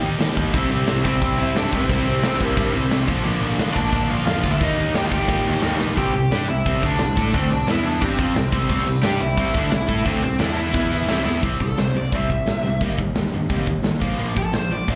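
A rowdy, upbeat punk rock riff bursts out at once from a stack of guitars: a bright, compressed distorted guitar with slapback echo, a very quiet double-tracked distorted guitar, and a faint crunchy overdriven guitar, all over a growling, overdriven picked bass, as a big, up-front rock kit with a punchy kick and sparkling cymbals crashes in. At 1.0 seconds a lead guitar through a small cranked amp joins with a warm, overdriven melody, and a drum fill near 6.0 seconds pushes the band into a new section. At 11.4 seconds that lead breaks into a solo for the final stretch of this cut from a longer piece, which sounds like a live club gig heard through the venue's PA.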